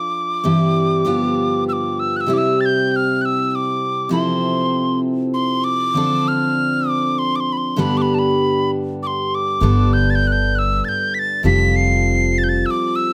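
A mellow tin whistle with airy vibrato and a tongued chiff carries the melody in this peaceful, pastoral acoustic folk piece in 3/4 at 98 BPM in C major, over a bright, full-bodied picked steel-string guitar with fresh strings, while a woody, growly pizzicato upright bass joins at 9.6 s, heard through close, detailed miking with light reverb in a passage cut from a longer performance.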